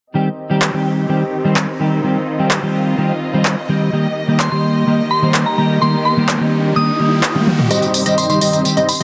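A dense, heavily limited mix with light reverb opens this emotional, powerful festival progressive house excerpt at 127 BPM in C minor, where a mellow, chorused electric guitar and veiled, muted strings under a filter sweep hold Cm and Eb chords, overdriven big-room drums with crisp hats, handclaps, tambourine and toms enter at 0.6 s, a soft FM bell melody with delay arrives at 4.4 s, a background riser and drum fill build the tension, and at 7.7 s a catchy, punchy plucky lead arpeggiates while a huge, detuned supersaw riff with a tape tint and its own filter sweep drives the build-up.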